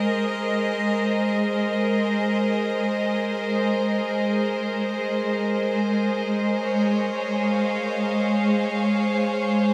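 A studio string section plays alone, up front and bowed, with a biting intensity, a smooth top and light vibrato, its sound trailed by delay. This luminous ambient piece in free time rests in Ab major, moving from Abadd9 to Bbm7/Ab at 6.2 seconds. The strings sit within a huge, wet reverb of 7.4 seconds that suggests a vast, echoing space, in a brief excerpt cut from a longer work.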